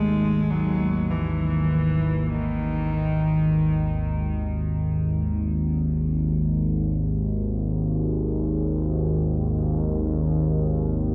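A dark ambient drone in free time, desolate and cavernous, cut from a longer piece. An analog drone sounding from 0.0 to 11.1 s sits up front with a slow-attack, evolving sawtooth and pulse-wave tone, ring-modulated and thickened with chorus, while a single bowed cello plays a pure, floating sul tasto melody through tape echo until 4.1 s. A wet cathedral reverb and the warbly pitch drift of worn cassette tape give the whole sound its worn, warbling character.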